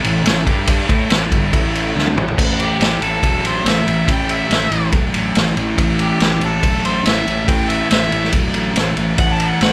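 Recorded live in one room with light reverb, this raunchy, driving blues rock and southern rock excerpt moves at 141 BPM in A mixolydian, anchored by a double-tracked fuzz guitar riff, a dark, round, overdriven fingered bass and a punchy, up-front vintage drum kit with dark cymbals. A very quiet, gritty tonewheel organ holds thick sustained chords through a rotary speaker until 2.3 seconds, and a drum fill leads into the next section. From 2.6 seconds a mellow, overdriven harmonica takes a solo with light vibrato and scooped notes.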